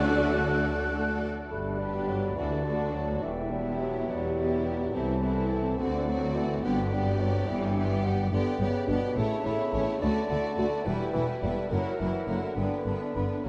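A quick, graceful classical-period movement for symphony orchestra in G major, lilting in 6/8 at 70 dotted-quarter beats per minute with a cheerful mood. A background violin section, lush and softly attacked, carries the melody between G4 and D5, while a second, closer violin section, focused and bowed, traces a second line beneath it. A distant concert flute floats high above with a pure tone, and a clear clarinet in the background adds a further line from D4 to E5. Violas, a warm bassoon and a mellow French horn section fill in the accompaniment and sustained chords, and the horns drop out at 13.3 seconds, just before the rest. Distant cellos and rich double basses anchor the bass, and the whole orchestra sits in a vast cathedral reverb with a long, echoing tail and a softened top end as the harmony moves from D through G, Em and D7 to a closing F#7 that resolves to G.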